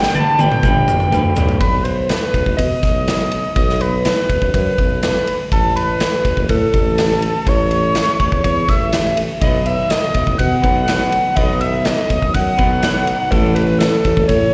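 A gritty, screaming synth lead carries the melody up front through this carefree, jangly indie rock excerpt at 123 BPM, its saturated tone colored by slapback and tape echo. A big rock drum kit opens with a fill while a grainy tube shaker sits in the background until 1.5 seconds, and a twangy, slightly broken-up electric guitar riff plays briefly at the start before returning at 9.4 seconds. Beneath it all a warm, punchy tuba holds down the bass with light vibrato, and the whole band sounds like a live gig heard through the venue's PA, with a light recital hall reverb.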